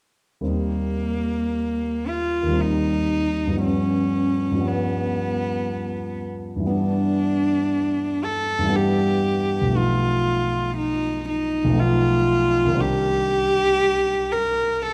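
A single bowed cello, intimate and up front with light vibrato, soft attacks and an airy bow, carries the melody from 0.5 seconds in this dreamy, luminous impressionist classical excerpt in a rubato 3/4, while a dark, mellow concert grand piano with deep bass supplies the accompaniment, the duo set in a wet recital hall reverb as the harmony drifts from Eb6 through G7#11 and B7#11 to Cmadd9.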